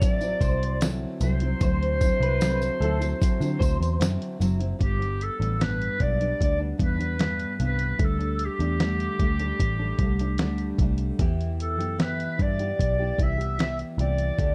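Dark, warm small-room production frames this laid-back, sunny indie bedroom-pop fragment, where a bright, soft-attacked clarinet sings the melody up front through lush chorus and slapback echo over fingerpicked nylon-string guitar with finger squeak and warbly pitch drift, a round, foam-muted electric bass, and a muffled, pitched-down sampler-style kit with a thumpy kick and fat snare, while a jingly tambourine sits in the background until 4.6 seconds and a slightly broken-up electric guitar through a small old amp adds a brief second line from 0.4 to 4.0 seconds.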